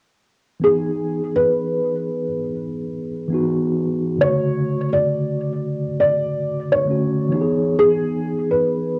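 A hazy home cassette recording, soaked in a wet studio reverb, holds this dreamy, cosy fragment of a slow hip hop groove at 67 BPM in E major, its sixteenths swung. From 0.6 seconds a felt-muted upright piano carries the melody up front, dark and intimate with thick felt and audible action noise, while a clean tine electric piano, also up front and lower in range, plays mellow accompaniment with a tape-worn, built-in-speaker character. Both drift under plate reverb over Emaj7, Dmaj7 and back to Emaj7 until 9.0 seconds.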